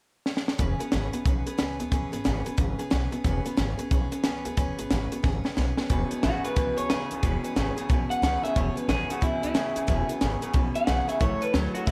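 Upbeat and rowdy, this rockabilly excerpt swings along at 181 BPM in E major, driven by a compact cocktail drum kit sitting up front with a punchy kick and a high-tuned snare. Around it sit a woody, growly upright bass, a full-bodied picked steel-string acoustic guitar, and a twangy, slightly broken-up electric guitar playing a low riff through spring reverb. A drum fill leads into a new section at 5.9 seconds, and a second lo-fi electric guitar takes the melody from 6.2 seconds, adding analog delay to its spring reverb, as the harmony moves from E6 to A6 near the end.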